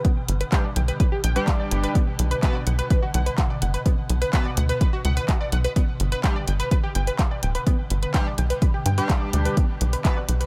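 Melodic techno at 126 BPM in a straight 4/4, this short cut from a longer piece carries a dark, hypnotic mood, moving between G and B minor. A punchy electronic kick sits up front, joined by a deep house drum kit of handclaps and dark hi-hats, both layered and re-recorded in a small room. A tight, driving sequencer bass with a nasal sawtooth and square-wave filter pluck enters at 0.3 seconds and pumps against the kick, while a tight sequenced synth spins mellow, detuned arpeggios coloured by chorus, phaser and tape echo. From 0.5 seconds a sync-sweep polysynth adds edgy, bright stabs with a sub octave, analog chorus and tape echo. Beneath it all, a swarming, tense drone of detuned sine voices evolves in the background with granular texture and built-in reverb, all set in a digital ambience.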